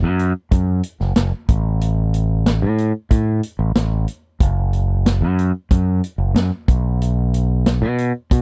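A straight 4/4 pulse drives this short classic rock excerpt, cut from a longer piece, with a sunny, confident mood. A growling fingered electric bass opens at 0.0 s, overdriven, bright and up front, moving between F#1 and B2. The vintage drum kit joins at 0.2 s with hi-hat, kick and snare, sounding acoustic and natural in a studio room, with a punchy kick, a medium-tuned snare and a rolled-off top. The two parts play together through to 8.4 s, tuned to A4 = 436 Hz. The sound is dry and close, in the manner of a 1970s studio recording, with little reverb.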